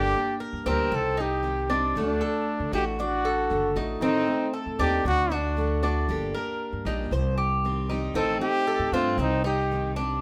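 A breathy, close-miked trumpet with mellow vibrato sings an intimate solo melody up front over a nostalgic Cuban son and guajira groove at 116 BPM, alongside a woody, thumpy pizzicato upright bass, metallic double-string tres arpeggios, a picked dreadnought steel-string guitar and a small, bright fingerpicked nylon-string guitar in the background, all in a moderate large-studio reverb as the chords move through Gm, Cm, D and Adim in this passage cut from a longer piece.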